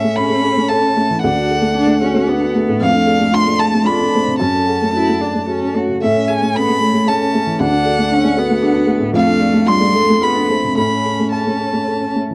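A rubato feel at 113 BPM in 3/4 sets up this tender, intimate neoclassical piece in A major, cut from a longer work, where a soft, dark, felt-muted upright piano sits up front with a thick, mellow accompaniment. Above it a single rich violin sings the melody with vibrato and expressive portamento, while one focused, smooth-topped cello traces a second line and a metallic, ringing vibraphone with medium mallets spins slapback-echoed arpeggios in the background. The chords drift through A, D, F6 and F#m in a dry, close small-room sound with a 1970s studio character.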